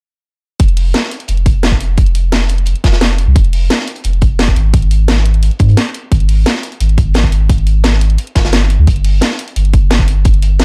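Liquid drum and bass with a lush, melancholic mood, heard here as a short excerpt from a longer piece with a dark production in a small room. Everything comes in together at 0.6 seconds. A deep, full sub bass with an added octave sits up front, its sine and triangle tones sustained with a fast attack and thickened by tube saturation. An up-front, tight electronic kick drum with a tape-like character drives the groove until it drops out at 10.3 seconds. Layered on top, a garage drum kit supplies hi-hat and a cracking snare. A quieter, crunchy breakbeat kit adds gritty, saturated hi-hat and a medium-tuned snare with a mid-forward, rolled-off top, its hats, snare and room ambience all thinned by high-pass filtering.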